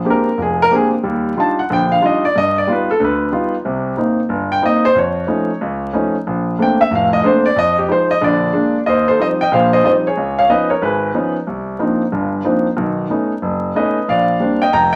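An intimate concert grand piano plays alone up front, its deep bass, long sustain and audible action noise giving a natural, close-up sound as it moves through rich harmonies such as Bb13, G7b13, Faug7 and Db9 before settling on Bb69. This is sophisticated, relaxed jazz in Bb major at 184 BPM in 4/4 with a swung eighth-note feel. A moderate club reverb and a layer of vinyl crackle frame the 15-second passage, which is cut from a longer piece and shifts into a new section at 8.9 seconds.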